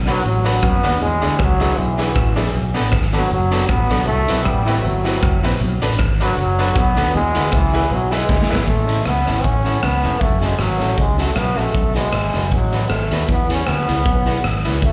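A lightly swung ska beat from a raw, gritty garage drum kit with a punchy kick and a fill at 8.3 seconds drives this cheerful live club snippet, where a round, dark fingered bass sits under a breathy, whispered trombone lead with light vibrato and tape echo, a slightly broken-up electric guitar plays accompaniment in the background, and a worn, slightly detuned upright piano adds woody stabs until 8.6 seconds, all heard through the venue's PA with club reverb.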